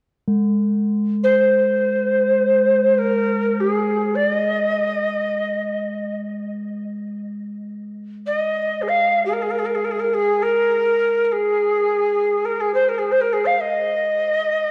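A breathy, reedy Native American-style cedar flute with a crisp chiff and vibrato carries the melody in Ab major pentatonic from 1.2 seconds, trailed by a diffuse ambient delay, while a pure, ringing quartz singing bowl struck with a wooden striker sounds a close, slowly beating tone from 0.3 to 7.7 seconds, all in a spacious, calm world meditation passage in free time, cut from a longer piece and bathed in wet reverb with the worn, warbling pitch drift of old cassette tape.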